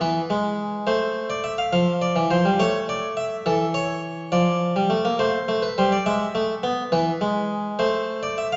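A solo Flemish-style harpsichord, plucked, bright and full on a single set of strings, opens this brief passage from a longer baroque-style two-part invention in 6/8, its voices spanning E3 to F5 with a driving yet contemplative mood. The instrument itself sounds close-miked, dry and up front, while the recital hall adds a long, wet reverb tail and a distant, muted top end. The harmony circles through minor and dominant chords before settling back on A minor near 7.8 seconds.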